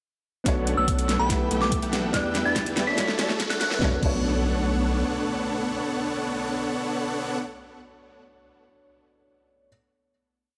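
A dark, boxy baby grand piano opens this bittersweet future bass piece in B minor at 143 BPM with a half-time feel, and by 0.5 s a huge, detuned supersaw riff pumps up front through a filter sweep over saturated sub bass, a knocking kick, a dubstep kit with a huge snare and metallic hats, a faint airy pad and a very quiet fingerpicked Celtic harp looping a 6-step arpeggio against the bar. During the build, a glassy, crystalline FM bell with vintage 12-bit grit and chorus plays short answering phrases high above, while the drum fill and a quiet riser drive toward the final Bm9 chord at 3.8 s. The drums drop out at 4.2 s and the bass at 5.0 s, the pad, harp and supersaw fade by 7.4 s, and the piano's tape-echoed chords then continue alone until 9.7 s in a moderate digital room.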